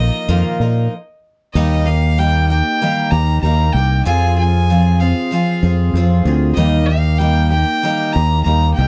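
Folk rock with a heartland rock streak, this short excerpt moves at 96 BPM in a straight 4/4 and carries a wistful, dusty mood. A bowed fiddle carries the melody between Eb5 and Bb5, its clear, earthy tone touched with light vibrato and set back at a distance. Up front, a picked twelve-string acoustic guitar fills out the accompaniment, jumbo-bodied and shimmering with its octave-doubled strings. A fingered electric bass sits prominently beneath, dark, round and punchy, with a direct amped edge between C2 and Bb2. The opening Bbsus4 breaks off in a stop from 0.9 to 1.5 seconds, after which the music settles into a passage moving from Eb to Fm and back to Eb. The sound is dry and close, recalling a 1970s studio with little reverb, and the clip is cut from a longer piece.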